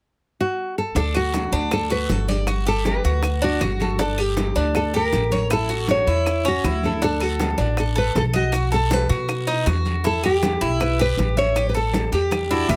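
Closely miked with light reverb, this sunny Cuban son and guajira excerpt at 158 BPM opens at 0.4 seconds with fingerpicked classical nylon-string guitar carrying the melody up front, soon joined by thumpy pizzicato upright bass and bright, double-strung Cuban tres arpeggios, while round bongos, ringing distant congas, woody claves, raspy guiro and grainy maracas sit in the background, a drum fill arrives at 12.3 seconds, and a metallic, nasal lap resonator guitar adds a brief slide second line at 12.5 seconds.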